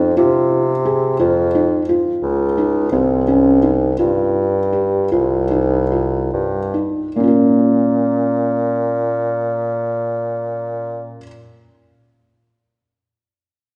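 Hypnotic and restless, this brief excerpt from a longer piece of contemporary chamber music moves in an uneven 11/8 metre with a straight feel, its eighth-note pulse ranging from 138 to 177 BPM in Bb dorian, tuned to A4 = 438 Hz. A felt-muted upright piano plays arpeggios between Bb3 and Bb4, its thick felt giving a dark, intimate hush, with the action noise of the instrument clearly audible. Beneath it, a mellow bassoon carries the bass line from C2 to C3, placed up front in a classical style with a soft attack, smooth top and light vibrato. The tempo slows from 1.2 to 7.2 seconds, where the first section gives way to a second built on Bbm, after harmonies moving from F7(no3) to Cm. A concert hall reverb with a 1.9-second decay wraps the pair, heard from further back in the room with a rolled-off, muffled high end.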